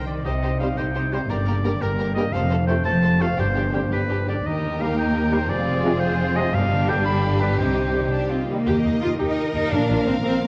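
In 6/8, this determined, adventurous cinematic passage, cut from a longer piece, carries a smooth, warm violin melody with vibrato over a clear oboe second line, which drops out at 8.1 seconds, and a distant, intense second violin part. A ringing, fingerpicked harp plays arpeggios in the background, while lush, focused cellos sit close beside rich, expressive double basses on the bass, a very quiet viola section fills out the accompaniment, and very quiet mellow horns and bright trombones hold sustained chords. Round, soft-mallet timpani strike at 3.4, 6.5 and 9.7 seconds, all within a wet scoring-stage reverb and the warbly pitch drift of worn old cassette tape.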